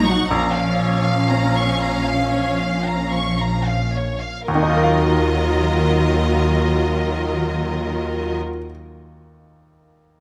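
Bittersweet and full of longing, this short cinematic passage in Eb minor moves in a rubato 4/4 at roughly 54-62 BPM, slowing down through its first 4.5 seconds. A rich, expressive violin section carries the melody with vibrato and a soft attack, while a second, clear and focused violin line sits more distantly alongside it. Lush violas add warmth and portamento to the accompaniment, and a smooth, even cello section lies in the background as a double bass section, bowed with light vibrato, holds the low end up front. A bright, brilliant baby grand piano plays intimately in the background with short sustain and audible action noise, and it plays on alone after the strings stop at 8.4 seconds until 10.2 seconds. The harmony moves from Bbm to Ebmadd9 at 4.5 seconds, captured by close, detailed microphones in a light reverb.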